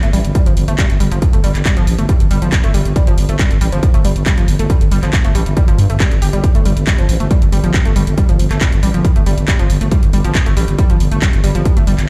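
Relentless and driving, this excerpt of peak-time techno runs at 138 BPM in a straight 4/4, tuned to A4 = 442 Hz. A growling, thick FM bass with tube saturation and sidechain pumping anchors the low end from the start, sitting between G1 and G2 with a fast attack and sustained notes. Above it, an analog pluck riff built from detuned sawtooth, square and triangle waves with a noise layer and ring modulation spans F3 to G4, its bright, round tone shaped by a filter sweep, chorus, overdrive, digital delay and sidechain pumping. A punchy analog drum machine supplies handclaps and hi-hat with a tape-warm character, while a layered, heavy electronic kick sits up front from 0.3 seconds to 11.7 seconds. The whole mix plays through a big sound system in a bare room, giving it a stony reverb that adds cavernous depth to the club-ready pulse.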